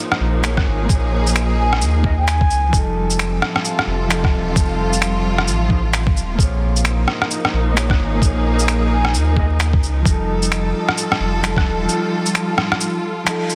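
A ghostly, rainy future garage excerpt in Bb dorian at 131 BPM opens with a dark, clean electric guitar and lush bowed strings, both sidechain-pumping alongside a round sine sub bass, while muffled, pitched-down rim clicks, finger snaps and shaker swing up front over a thumpy kick, a hollow flute drifts in the background at 1.6 seconds through digital delay, and vinyl crackle sits under a dense, heavily limited master as the chords move between Bbm7 and F7 before a band accent at 13.3 seconds.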